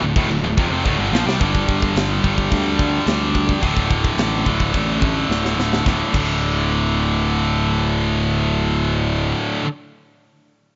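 A small-room sound with its highest frequencies trimmed frames this epic, heavy metal cut in D minor at 108 BPM. It opens with the riff already under way, a barely audible bowed string section holding a D minor chord beneath it, before a drum fill carries it into the next section at 1.4 seconds. Two distorted high-gain guitars drive that riff, one bright and up front and the other scooped and set back, over a growly, fuzz-overdriven picked bass and a tight, polished acoustic kit with a high-tuned snare, china and crash cymbals. The chords move from G5 to D5, a second drum fill arrives just before the final section, and the drums stop at 6.3 seconds.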